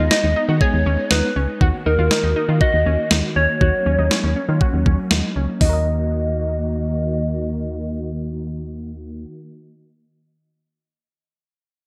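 Bright 1980s-style digital production with a moderate plate reverb frames this melancholic, cool synth-pop excerpt in Eb minor at 120 BPM, where a soft, warbling FM lead with tremolo and delay carries the melody over full-bodied string-machine violas holding slow-attack chords, a sawtooth analog pluck playing filter-swept arpeggios with chorus, a punchy, dark FM bass up front, and a thumpy, overdriven 12-bit drum machine with gated reverb that stops at 5.7 s, leaving the return to Ebm to the synths and bass.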